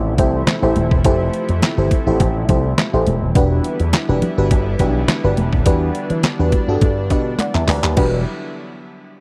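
A punchy, bright slap bass run through an envelope filter anchors this late-night, danceable early-eighties boogie funk clip, sitting up front beside a detuned 8-bit drum machine with a thumpy kick, handclaps and a drum fill from 7.4 to 8.0 seconds. A dreamy FM electric piano layered with a soft pad shimmers with chorus and phaser, while a thick, sawtooth-and-square unison pad holds sustained chords as the harmony moves from Fmaj7 to Em9. Damped, thick-skinned congas sit in the background of a dry, close studio sound.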